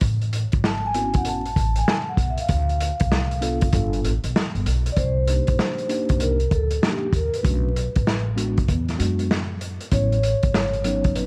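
Jazz-hop at 97 BPM with a cool, nocturnal mood and a 16th-note swing, built on a muffled, lo-fi vintage drum kit sitting up front with a tight kick and medium-tuned snare, plus a woody, thumpy pizzicato upright bass. A ringing soft-mallet vibraphone with slow motor vibrato enters at 0.7 seconds and takes a solo through 5.0 seconds, and a mellow, clean tine electric piano joins at 0.9 seconds, as the chords move from A6 through Dm7 and G7, then Cm7, Bm7 and E7 back to A6, with studio reverb and vinyl crackle over the mix.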